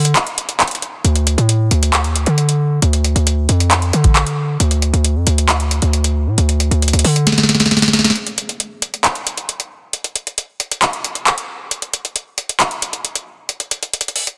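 The sound is dense and heavily limited in a modern way, with a light reverb around the parts. This dark, hard-hitting fragment of trap-styled hip hop moves at 135 BPM in 4/4 with a half-time feel, set in D phrygian. A tape-warm, booming analog drum machine sits up front with a deep kick, crisp snare, handclaps and metallic hi-hats, the snare, clap and hats caught in a short room. Beside it, a punchy, heavy 808-style sine bass with a noise layer, fast attack and decaying tail ranges from D2 to D3 before stopping at 8.1 seconds. A drum fill leads into the second section at 8.2 seconds, where the drums carry on alone through a break until the fragment ends at 14.4 seconds.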